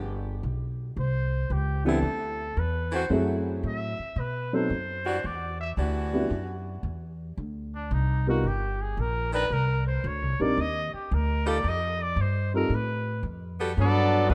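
A rough home demo with light reverb and small-room ambience captures a brassy, swinging big band excerpt at 112 BPM, where a bright saxophone section holds sustained chords over a woody, thumpy pizzicato upright bass, a warm, roomy trumpet solos with light vibrato from 1.0 seconds, a dark, mellow upright piano with audible action noise accompanies, and a tight, up-front trumpet section and a smooth-topped trombone section enter at 13.8 seconds.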